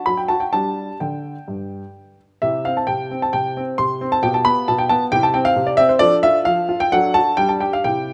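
Close, detailed microphones and a moderate recital-hall reverb frame this cheerful, playful classical-period piano sonatina, cut from a longer piece, where a solo baby grand sits intimate and up front, its action noise audible, and moves with a rubato feel across 8.1 seconds.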